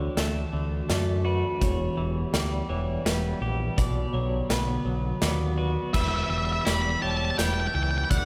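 Post-rock in 3/4 at 83 BPM, this melancholic, cinematic fragment of a longer piece sits in E dorian, tuned slightly low to A4 = 436 Hz, and moves through Dadd9, Em and Bm before returning to Em. A warbly, lo-fi tape-like pad holds sustained chords deep in the background, its slow-attack tones softened by chorus and its own reverb, while two bright, twangy clean electric guitars pick arpeggios, the lower one compressed and treated with tremolo, the higher one ringing between A4 and D5. A growling fingered bass, overdriven and up front, anchors the low end, and a big acoustic rock kit with a boomy kick, medium-tuned snare, hi-hat and crash enters at 0.2 seconds. At 5.9 seconds the harmony lands back on Em and a dark octave-fuzz lead guitar cuts in with a distorted melody high in its range, sitting loudest in the mix. The whole performance is bathed in a cathedral-like reverb with a 4.7-second tail, giving it a vast, hall-filling sense of space.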